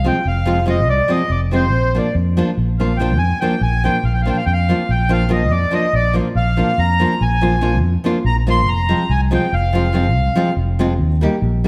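Set in a moderate recital-hall reverb, this wild, virtuosic Balkan wedding-band excerpt in 11/8 at 284 BPM (eighths) and Bb mixolydian puts a reedy, slow-beating, mid-forward accordion up front in a soloing second line until 10.5 seconds, over a full-bodied, fingerpicked nylon-string guitar and a growly, amped fingered electric bass moving through Fm, Bb and Eb.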